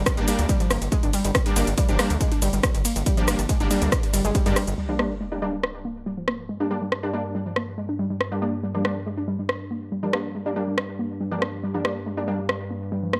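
A bright, detuned rave stab with chorus, delay and tape grit punctuates this intense, driving peak-time techno excerpt, joined by a warbly, lo-fi square-and-saw pluck riff with overdrive and tape echo, metallic hats, ride, rim clicks and shaker from an up-front pumping kit, and a heavy, tape-warm kick until about 4.4 s over a gritty, saturated sync bass that runs until about 4.7 s. A sub drop hits at 4.8 s, and an evolving analog drone enters at 5.8 s.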